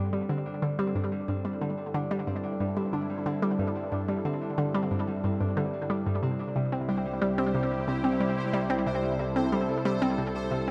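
This is ambient, sequencer-driven space music at 91 BPM in a straight 4/4, expansive and cosmic in mood, cut from a longer piece. A hollow, bouncy square-wave pluck carries the riff up front, its detuned tone, fast attack and short decay colored by chorus, phaser and tape echo. A thumb-plucked concert harp rings out its arpeggios close by, acoustic and bright, softened through a low-pass filter and tape echo. Beneath them, an airy, evolving sawtooth pad holds sustained chords with a slow attack, filter swell and chorus, fading in gradually across the whole passage. The harmony moves from Gsus2 to C at 6.2 seconds. A pulsing, tempo-synced triangle texture enters at 6.6 seconds on a high C with its own reverb, and a lush plate reverb with a 3.0-second tail surrounds the mix.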